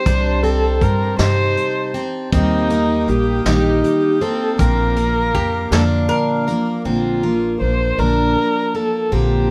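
Closely miked and finely detailed under a light reverb, this excerpt from a longer piece is a peaceful, gentle acoustic folk number in Bb major, moving at 53 BPM in an unhurried 6/8 over a Cm, Eb and Bb progression. A single bowed viola carries the melody up front, dark and woody with vibrato and a smooth top, set in plate reverb. Beneath it, a jumbo steel-string guitar picks a full-bodied accompaniment with audible finger squeak, while a plugged-in dreadnought twelve-string adds shimmering, octave-doubled arpeggios on fresh strings. A pizzicato upright bass on gut strings sits thumpy and prominent, and a vintage brush kit in a small room, with a tight kick, medium-tuned snare and rolled-off top, keeps time until 6.7 s. A reedy, airy accordion hums sustained chords in the background until around 6.8 s, and a bright, metallic, nasal lap resonator guitar played with slide and fingerpicks slips in a second line from 5.3 s.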